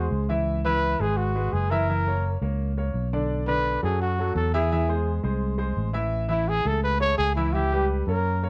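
A moderate studio reverb frames this short, sophisticated and sunny Afro-Cuban jazz cut at 170 BPM, where a breathy, dark trumpet carries the up-front solo melody with vibrato, scooped notes and a smooth top over natural-sounding grand piano accompaniment and a round, punchy, amped fingered electric bass, all three playing throughout the 8.5 seconds as the chords move from C#m7 through F#7, Bm7, Eaug and Amaj7 to C#m7b5.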